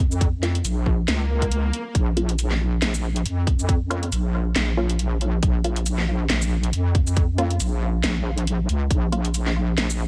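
A saturated, detuned wobble bass holds a sustained, wobbling Bb minor line up front in this meditative, heavy deep dubstep excerpt at 138 BPM, with a half-time swung groove from a tight electronic kick and a garage kit of cracking snare, hi-hat and shaker, while a muted, filter-swept dub chord stab with phaser and dub echo flickers underneath, an electronic swell sounds between 1.2 and 1.9 seconds, and vinyl crackle runs through the background.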